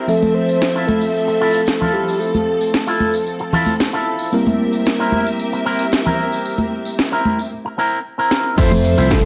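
This short nu-disco excerpt opens on a bed of worn, slightly out-of-tune electric piano with light overdrive and a sidechain pump, under lush, distant bowed strings holding sustained chords that pump along with it. An up-front, twangy envelope-filtered guitar riff with a lush chorus sits alongside, while a soft, round synth lead with a sub-octave layer, chorus and tape echo carries the melody from 0.1 seconds, alongside hard-handed, close and dry tambourine and congas. The house drum kit arrives at 0.6 seconds with a cracking snare, metallic hats and crash cymbal, and a drum fill at 8.3 seconds sets up the change. At 8.6 seconds the harmony returns from C7 to Fmaj7 as the synth lead comes back, and a punchy, tube-saturated vintage slap bass and a tape-warm, punchy electronic kick join, all inside a moderate plate reverb. The mood is feel-good and sunny, with a steady straight groove in four.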